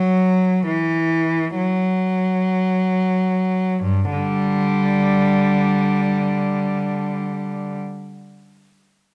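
A single bowed cello stands up front, its clear, smooth, even tone carrying vibrato through a low register from G2 to G3 until it stops at 7.8 seconds. This nostalgic, serene classical fragment of a longer piece unfolds in free rubato at a very slow 22-38 BPM, easing down over the opening 3.8 seconds before a new section begins. Close, detailed microphones capture the cello within a moderate recital-hall reverb.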